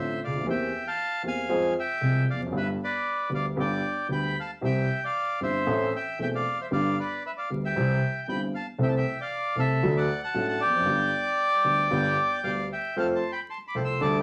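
Tango with a nostalgic, elegant mood, moving at 115 BPM in 4/4 with a rubato feel and tuned slightly low to A4 = 439 Hz. A reedy bandoneon carries the melody up front from start to finish, its tone set in a boxy small room, while a warm grand piano, also up front, supplies the accompaniment beneath it across a deep range reaching down to E1. Near the close, at 13.0 seconds, a second bandoneon adds stabs in the background, bright and airy against the lead. The harmony wanders from C7/E through Fm and G before settling into a progression around C, Am, G and D, arriving on F for the final moments. The sound sits in a wet studio reverb with a touch of vinyl crackle, and the passage is cut from a longer piece.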